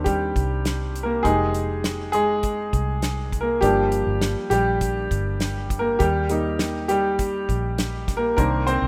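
Piano-driven pop in Eb major at 101 BPM, this anthemic, warm excerpt sets a clear, intimate baby grand piano up front, its action noise audible as it carries the lead through a progression of Cmadd9, Fm7, Gm7 and Eb. Underneath, a dark, round, foam-muted electric bass and a dry 70s drum kit with a fat snare and tight kick keep a straight 4/4 pulse throughout. Light reverb and studio ambience give the whole thing the rough feel of a home demo.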